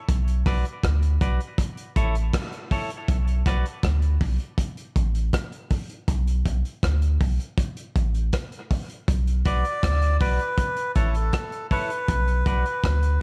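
A round, deep sub bass and a crunchy, saturated breakbeat kit of kick, hi-hat and rim click open this spacious, hypnotic dub reggae piece at 80 BPM in B minor, with a bright, twangy clean electric guitar drifting in on dub echo at 0.5 s. The straight 4/4 groove moves between B minor and A, with stretches where the harmony drops away, while the dark, gritty drums and the soft bass sit up front in a small-room, echo-heavy mix. At 9.5 s a reedy, breathy melodica takes up the tune with its own dub echo, entering together with the returning guitar, and carries on after the guitar falls away just before the cut ends.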